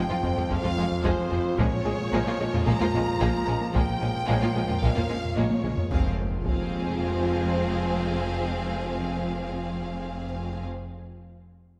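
A distant, expressive studio violin section carries the melody in this vast, relentless cinematic cue, a hybrid of orchestra and electronics cut from a longer piece. Beneath it, a lush symphonic string body adds weight: focused second violins with a smooth top, even violas in the background, soft-edged cellos, and rich double basses anchoring the low end. Very quiet dark French horns and clear trombones hold sustained chords, shadowed by a glassy, ethereal FM pad, while the harmony moves from F minor to B-flat minor seventh and back. In the opening stretch, a gentle, nasal synth pluck plays arpeggios, a round, deep analog bass drives a riff, and a felt-muted upright piano adds intimate texture with audible action noise; all three drop out near 5.9 s. Background taiko drums struck with heavy sticks push the momentum until 7.0 s, and a very quiet electronic impact lands at 5.9 s as the music shifts into its second section. 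A wet concert hall reverb surrounds the sound.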